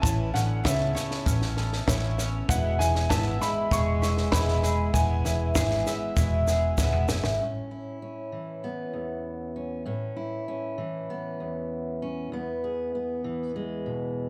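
Anthemic and hopeful, this indie folk excerpt at 98 BPM in A major, heard as a live club gig through the venue's PA, opens with a woody, slightly detuned upright piano melody over a classical-style French horn line, a mellow felt-muted upright piano, shimmering twelve-string and fingerpicked steel-string acoustic guitars, round double-strung mandolin arpeggios, a dark, amped hollow-body electric bass, a grainy egg shaker and a punchy, dry cocktail drum kit whose fill at 6.8 s closes the first passage, after which the steel-string guitar, with audible finger squeak, carries on alone from 7.4 s over Aadd9 and E chords.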